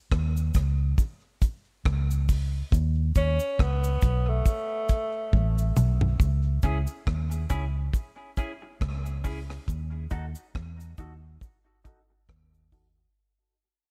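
The dark, round and punchy muted electric bass sits up front in this hypnotic, heavy dub reggae excerpt in C# minor, moving at a slow 69 BPM in 4/4 with a swung sixteenth feel. A deep reggae drum kit with a tight kick, hi-hat, rim click and toms stays dry and close throughout, joined from 0.4 seconds by a faint cabasa heard in a small room. The opening break brings a distant, roomy tenor saxophone with light vibrato from 3.2 to 5.8 seconds, its short phrase trailing dub echo, before a drum fill leads into the second part. From 6.6 seconds a bright, clean picked electric guitar takes up the accompaniment, coloured by lush chorus, dub echo and a filter sweep as the piece fades out. The harmony moves from C#sus2 and Aadd9 to C#m and D#dim, all set in an echo-heavy mix with studio reverb and a faint mains hum underneath.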